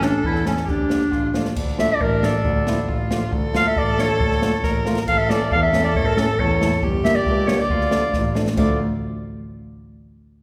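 Heard from further back in a reverberant recital hall, this soulful, festive klezmer clip in D harmonic minor moves at 137 BPM in a straight 2/4, with a warm classical-style solo clarinet up front carrying the melody over a rich, nasal bowed violin second line, a fingerpicked flamenco guitar in the background, an earthy bowed double bass with light vibrato, and an airy jazz kit with dark cymbals and a boomy kick that plays drum fills at 4.6 and 8.1 seconds.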